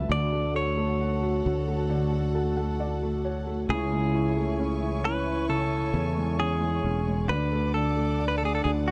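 Pop ballad at 67 BPM in a melancholic, emotional mood, cut from a longer piece, where a bright, twangy clean electric guitar carries the melody up front over a growly, punchy fretless bass, a soft felt-muted upright piano in the background that adds a fill from 1.9 to 3.7 seconds, lush bowed strings holding sustained chords, and a mellow French horn section with tape echo playing a second line, all moving through Dmaj7, Amaj7/C# and D in a small room with a dark, warm production.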